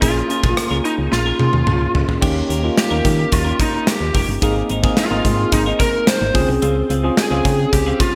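This 1980s-style pop excerpt moves at 109 BPM in a straight 4/4, driven by a gated 80s drum kit placed up front, with a punchy kick, a medium-tuned snare, rim clicks, hi-hat, toms and bright cymbals including crash, all wrapped in a gated reverb that evokes a stone room, plus a drum fill from 1.1 to 2.2 seconds. Beneath it, a solid FM bass gives round, dark, decaying notes with a fast attack. A tine electric piano, clean through a combo amp and shimmering with analog chorus, carries the accompaniment, while a twelve-string electric guitar sits in the background with a compressed, twangy picked riff and a subtle chorus. On top, a lead guitar through a small cranked amp sings the melody with a picked, overdriven tone and delay. The harmony moves from Bbm7 to Eb7, Abadd9 and Dbmaj7 under a lush hall reverb and a glossy digital production, giving the passage an uplifting, polished mood.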